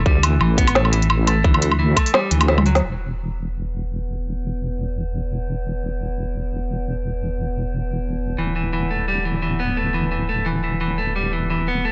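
Swung half-time drum and bass at 173 BPM in E minor, spacious and cinematic, opens on a drop where a tight, layered electronic kick and an organic electronic kit of woody snare, crisp hats, toms and woodblock play alongside a deep, detuned sawtooth wobble bass with chorus and clean, picked electric guitar arpeggios through analog delay, ending in a drum fill at 2.5 seconds before the beat falls away and an eerie, metallic FM drone with chorus and reverb enters at 3.6 seconds, the guitar returning at 8.4 seconds over the sustained bass in a dry, gritty recording cut from a longer piece.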